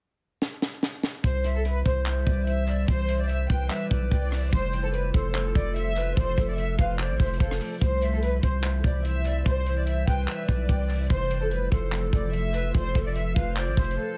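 A tight, up-front funk drum kit opens with a fill before a deep, long 808-style bass, a dark, woody violin section with tape echo and breathy cane pan pipes arrive within the first two seconds, joined moments later by an ethereal, warbling pad, shaping a triumphant yet wistful half-time trap groove over C and F in an echo-heavy small room until the drums break at 14.0 seconds.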